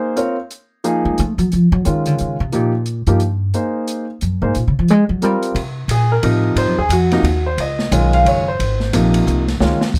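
Jazz piano trio in a lilting 3/4 swing, sophisticated and warm, cut from a longer piece with a dry, close sound. The pizzicato upright bass, woody and thumpy on gut strings, enters at 1.1 s and takes the spotlight with a solo. The up-front grand piano, with its audible action noise and long sustain, takes over the solo at 5.6 s, while the open drum kit of dark cymbals, a medium-tuned snare and a boomy kick sits softly underneath.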